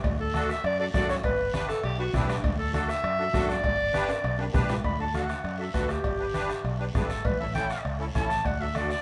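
A warm, roomy clarinet carries the melody up front across this sunny, festive cumbia in D major at 200 BPM, with a distant, classical-style tone, and takes a solo from 4.8 s to the end. Beneath it, a reedy musette accordion supplies shimmering accompaniment, while a breathy, whispered tenor saxophone with light vibrato adds an intimate second line that stops at 2.5 s. A round, punchy fingered electric bass anchors the D-to-G alternation that later reaches A7 before resolving back to D. The percussion mixes a distant, soft-beater bombo with ringing cowbell and timbales in the background, a raspy, saturated guiro, and very quiet, thick-skinned congas played with soft hands. A drum fill at 4.1 s leads into the second section, and the whole band, playing live in one room, sits in a wet studio reverb in this excerpt cut from a longer piece.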